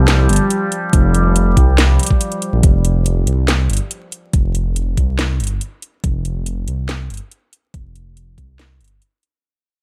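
Dry and dusted with vinyl crackle, this brooding, cavernous deep dubstep excerpt moves in half-time, opening on a drop where a nasal, chorused drone with moving overtones hangs until 2.7 s over a rumbling, detuned saw bass with tube saturation, while a garage kit's cracking snare and metallic hats and, from 0.9 s, an up-front knocking kick drive the beat, and from 2.6 s the bass takes a filter sweep as the track fades out.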